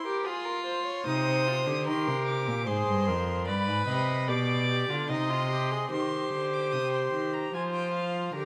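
Moving in a straight three-beat metre, this brief fragment of a baroque-style fugue for string quartet has a serious, solemn character. Two violins and a viola begin together: the first violin carries the melody high above, the second violin traces a supporting line beneath it, and the viola, with a nasal and somewhat distant colour, fills in the accompaniment. The cello enters at 1.1 s with a bass line and sits up front in the blend, its reedy, gut-string voice grounding the texture. All four players use a period-style approach on gut strings, and the upper three add a light vibrato to their bowed tone. The harmony moves among F minor and C minor with a brief turn to G major, and a second section begins at 5.9 s before the passage settles on an open F sonority at 7.5 s, all heard within the moderate reverberation of a recital hall.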